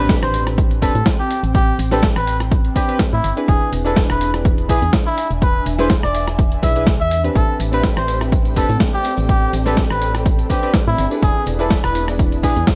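A swung 124 BPM deep house groove in 4/4 rides on an overdriven, punchy electronic kick up front and a gritty, compressed sampler-style kit of hi-hat, rim click and snare, while a hollow, dark organ-like FM bass pumps beneath Am11 and E7 chords in A minor. A cup-muted trumpet carries a veiled, lightly vibratoed solo melody with dub echo over round analog key stabs and an ethereal, warbling pad in the background, with a barely audible electronic impact opening the piece. At 7.4 seconds a silky, very quiet string machine and a jingly, bright tambourine join this moody, hypnotic excerpt, which has little reverb and sits under a layer of vinyl crackle.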